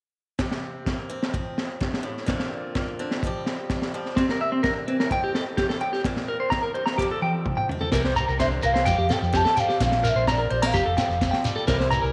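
This highlife guitar band excerpt has a danceable, joyful mood, built on a steady, straight four-beat groove. A bright, boxy acoustic guitar picks a swing-style accompaniment while a crunchy breakbeat drum kit sits up front with a tight kick, high-tuned snare, dark cymbals and a saturated, gritty character under a rolled-off top. At 4.2 seconds a clean electric guitar joins with picked arpeggios coloured by slapback echo, and a drum fill leads into a new section at 7.9 seconds. There a round, punchy hollow-body bass and a grainy, distant shekere come in, and shortly after a pure, hollow wooden flute carries a tongued melody with vibrato. The chords cycle through C7, Fadd9 and Bb colourings, and the whole is set in a moderate echo-chamber reverb with small-room ambience.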